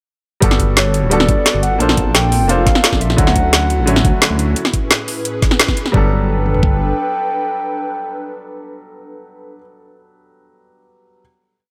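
Liquid drum and bass at 174 BPM in G lydian, dreamy and lush, opens its drop at 0.4 s with rolling two-step garage drums (an overdriven knocking kick and toms alongside a woody snare and metallic hats) over a dark, detuned sawtooth bass with a rumbling dotted rhythm. A clear grand piano with delay plays held chords with syncopated pushes, one shape moved in parallel through Gmaj9, Bbmaj9, Dmaj9 and Amaj9, while an airy, breathy pad with chorus, 12-bit sampler grit and sidechain pumping sits in the background. A hollow, mellow clarinet-like synth lead with vibrato, chorus and digital delay sings call phrases, and after a band accent at 5.6 s the snare and hats stop at 5.9 s as a final Gmaj9 chord rings out in light digital ambience.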